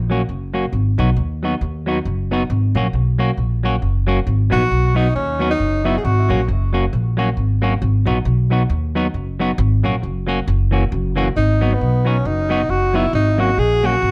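A dark, moderately reverberant production frames this driving, mischievous ska excerpt in swung 4/4, with a woody, thumpy pizzicato upright bass on gut strings and a clean, fingered semi-hollow electric guitar sitting up front over minor-key seventh and added-tone chords. A breathy, mellow tenor saxophone with light vibrato, scooped notes and a smooth top plays jazz-style solo phrases through tape echo, first at 4.5 seconds and again from 11.4 seconds, when the music moves into a new section.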